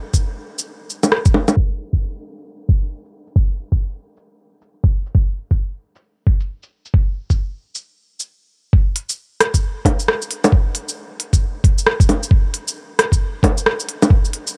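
A muffled, thumpy electronic kick and an organic-electronic drum kit enter together at 0.1 s, opening this short, ghostly and melancholic future garage cut from a longer piece. The kick has a compressed, pitched-down, sampler-style weight. The kit adds bongos, crisp hi-hats, rim clicks and shaker in a swung sixteenth-note feel, with low-pass filtering dulling its percussion, snare, hats and room sound. From 1.6 s to 8.7 s a filter sweep moves over the drums before the final stretch. Both parts sit up front, tape-toned and re-recorded in a small room, with little reverb and an overall cassette haze that keeps the mix dim and intimate.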